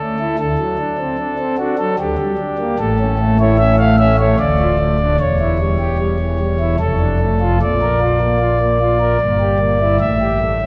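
Worn, warbling cassette tape with a drifting pitch colors this short fragment, set in a wet church reverb with a long, lingering tail. A solo pipe organ on a principal stop, smooth and up front with baroque voicing, plays a dark, solemn chorale in triple metre, spanning from a deep D1 up to F5. The harmony moves through minor and diminished colors and arrives on an open A7 sonority at 10.0 seconds, where the passage is cut from a longer piece.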